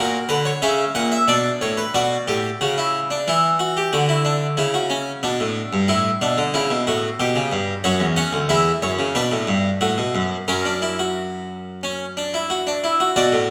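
A straight 4/4 pulse at 91 BPM drives this lively, stately excerpt of a baroque-style three-part fugue for solo harpsichord, tuned to A4 = 441 Hz, whose close, up-front Italian-style instrument with two sets of strings sounds full and plucked from D2 up to F#5 as it moves through harmonies from F#7/A# and Bm to a C# diminished chord before settling on F# near 10.5 seconds, all set in the lingering 1.6-second reverb of a recital hall.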